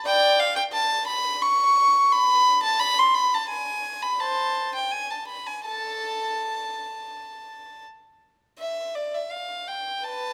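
Moving in a flexible 4/4 with rubato at around 80-88 BPM, this short cut from a longer baroque-style suite movement unfolds in a flowing, solemn mood, tuned to A4 = 442 Hz. A single unaccompanied violin plays throughout, from 0.1 to 10.3 seconds, ranging from A4 to C#6 with a period-style gut-string tone that sounds nasal and reedy, its airy bow captured close and up front. The instrument sits in a wet recital hall whose 1.6-second reverb trails generously behind each phrase.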